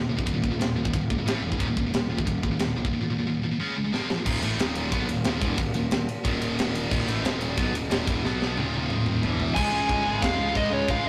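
A rough rehearsal-room recording with tube saturation and a moderate stone-room reverb frames this aggressive, epic heavy metal clip at 181 BPM in Eb minor, where a bright, double-tracked high-gain guitar riff and a growly fuzz bass drive forward over a tight drum kit with a high-tuned snare, crashes, china and ride. A distant, earthy chamber string section enters at 4.2 seconds with very quiet sustained chords under fills, and the groove drops to half time at 9.6 seconds as a dark, distorted lead guitar melody arrives up front at 9.5 seconds, before the cut.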